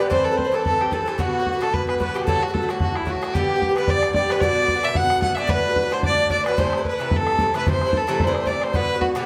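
Spirited and driving, this Celtic reel excerpt in A dorian races along at 222 BPM with a swung feel, as a dark, woody fiddle with light vibrato carries the melody up front over a bright, metallic bouzouki, an open, boomy bodhran, and very quiet second lines from a ringing fingerpicked harp and a shimmering, reedy musette accordion, all in a wet studio reverb, moving from Amadd9 through Bm, D and G before the section changes at 7.7 seconds.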